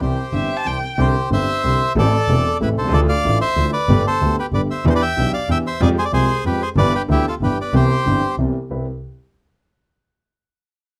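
Tango in 3/4 at 186 BPM, played with a rubato feel in C major, this short excerpt cut from a longer piece carries a nostalgic yet playful mood. A reedy, dark bandoneon carries the melody, close-miked, dry and full so it sits up front from the opening moment. Beneath it, a concert grand piano provides accompaniment with deep bass, an open tone and long sustain, while a single bowed double bass, clear and focused with vibrato, anchors the low end. A distant, expressive violin adds a brief second line from 0.3 to 1.0 seconds, its bowed tone warm with vibrato and portamento. The harmony moves from C through Am, Dmadd9, Gadd9, Em7 and Fmadd9 to G6 before settling on Cmaj7, all captured with close, detailed microphones and light reverb.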